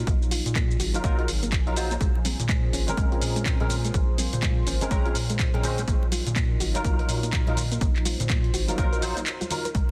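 Deep house with a hypnotic, moody drop, where a rubbery, hollow square bass and a punchy electronic kick drive a swung groove under handclaps, hi-hat and shaker from an analog drum machine, barky tine electric piano stabs from 0.9 s, a dark detuned pad and soft round plucked arpeggios set back with chorus and pumping, and very quiet thin-skinned congas entering at 2.2 s in a dense, heavily limited modern master.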